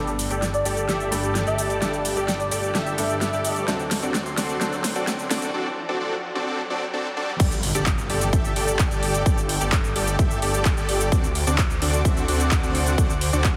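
Heavily compressed and thinned at the low end like a radio broadcast, this euphoric festival progressive house excerpt sits in a lush hall reverb and moves at 129 BPM in a straight 4/4, cycling between Gsus2 and D7. It opens in a build-up: a brilliant grand piano plays accompaniment in the background, a slow-blooming unison pad holds chorused chords behind it, and an airy, dreamy lead with a soft noise layer and vibrato sings a brief high melody near the start. Up front, a huge, dense supersaw riff with a sub octave and vibrato moves through a filter sweep and digital delay, while a thick, chorused detuned saw bass and an overdriven big-room kit with a huge snare, metallic hats, handclaps, cabasa and crash cymbal play a long drum fill. A very quiet electronic riser enters at 4.5 seconds, and at 7.4 seconds the piano stops as the drop lands with an impact and a punchy, tape-warm kick drum that pushes to the front of the mix. 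Sidechain pumping makes the piano, pad, supersaw and bass breathe around the beat, giving the whole section its anthemic lift.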